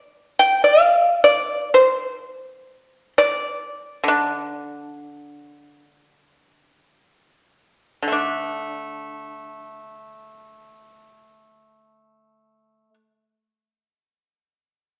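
Chinese traditional solo plucked-string music, elegant and contemplative in free time and the D yu mode tuned to A4 = 438 Hz, features a bright, percussive acoustic pipa played with fingerpicks, sitting up front and ranging from D3 to G5, entering at 0.4 seconds and slowing between 3.7 and 8.1 seconds before a new section begins, all heard in a reverberant recital hall in this short cut from a longer piece.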